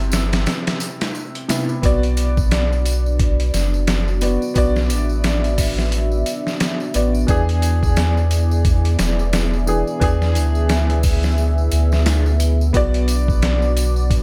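A gritty, pitched-down sampler-style drum kit sits up front, its thumpy kick, medium-tuned snare and hi-hat compressed and carrying the sound of a large room. This hypnotic, melancholic trip hop excerpt moves at 88 BPM in 4/4 with a swung sixteenth-note feel, set in B phrygian. A round, deep dub sub bass sits close alongside the drums, while a worn, woody, slightly detuned upright piano plays accompaniment through tremolo and tape echo, and a ringing tambourine played with hard hands adds acoustic sparkle from a small room. After a brief break from 0.5 to 1.8 seconds, a moody analog pad enters at 1.8 seconds with slow-attack sawtooth chords, thickened by chorus and a sub octave. The harmony moves from Cmaj7 to Bm, then to E7 and back to Bm, with a dry, close mix overall.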